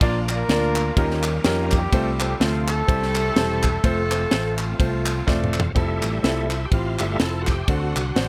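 A tight, dry funk drum kit with bright cymbals, a punchy fingered electric bass, a clear concert grand piano and a shouting, lightly overdriven tonewheel organ churning through a fast rotary speaker drive this uplifting, soulful uptempo gospel cut in F major at 125 BPM with a swung feel, as a tight horn section with octave doubling and slapback echo carries the melody until 5.6 seconds, hollow group handclaps join at 0.3 seconds, and after a drum fill the organ takes a solo from 5.8 seconds over a very quiet, veiled muted string section and light reverb.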